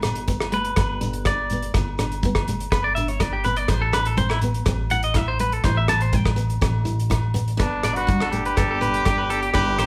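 A damped, dry drum kit with a tight kick drives this carefree, danceable highlife groove together with woody pizzicato upright bass, a picked steel-string acoustic guitar in the background, distant ringing agogo bells, very quiet congas and grainy shekere. From 0.5 seconds a bright, twangy clean electric guitar takes the spotlight with up-front arpeggios over a move from G to Amadd9. At 7.6 seconds a clear trumpet with light vibrato enters on the melody, shadowed by a breathy, whispered alto saxophone line in the background, all in a moderately reverberant large studio room.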